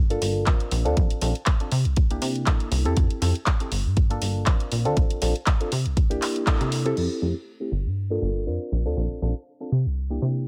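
Dry in feel, this joyful, feel-good filtered disco house fragment rides filter sweeps over a funky sawtooth-and-square analog bass with a fast, decaying pluck and a reedy, worn, slightly out-of-tune electric piano, both pumping under sidechain and low-pass filtering, the piano also phased, while a punchy layered electronic kick and a house kit of bright hi-hats, handclaps and crash cymbal sit in studio reverb, hit a band accent at 6.5 seconds and drop out by 7.1 seconds, leaving bass and piano to carry on.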